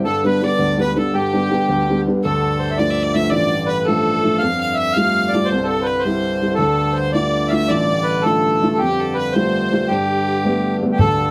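Celtic folk jig in 6/8 at 110 BPM in G mixolydian, bright and lively, with an airy, reedy accordion carrying the melody up front, a clear, nasal bowed fiddle playing a second line, a woody, boxy upright piano accompanying with audible action noise and long sustain, a breathing harmonium drone in the background, and a boomy, distant bodhran sounding only at 11.0 seconds, all set in a small room with close, detailed microphones.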